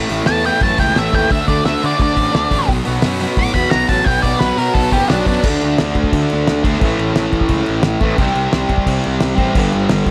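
A straight, driving 4/4 at 175 BPM gives this swaggering, raw garage rock excerpt its push, with a cloth-damped drum kit thudding out a fat snare, tight kick and dark cymbals under a double-tracked, compressed fuzz guitar riff and an overdriven picked bass. Over the first half, up to 5.4 seconds, a dark octave-fuzz lead guitar carries the melody up front, high above the power-chord riff moving through A5, D5 and B5. After that the riff, bass and drums press on alone through D5, A5, C5 and G5 in a small room with light reverb.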